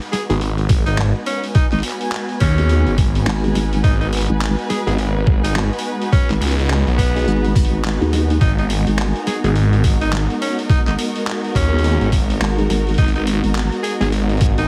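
A raspy, forceful tenor saxophone carries the melody from 0.1 seconds, bright with a light vibrato and a smooth top, its phrases trailing off into dub echo over a funky, swaggering glitch hop groove at 105 BPM in G# minor, swung on the sixteenths and resting on a single G#m7 chord. Underneath, two up-front basses share the low end: a thick, swirling detuned saw bass run through a phaser and tube saturation, and a nasal, resonant vowel-sweep wobble bass with chorus that joins at 1.7 seconds. A gritty, pitched-down sampler-style kit of handclaps, hi-hat and medium-tuned snare is joined by a thumpy, tape-warm electronic kick in front of the mix, both set in a small room ambience. A dark, woody string section holds lush bowed chords with sidechain pumping, while a soft, flute-like tonewheel organ adds stabs in the background through a fast rotary speaker, dub echo and the same pumping. A cloudy, evolving granular pad drifts in at 1.2 seconds with its own reverb, and the whole excerpt, cut from a longer piece, sits in a heavily compressed radio sound with vinyl crackle and light reverb.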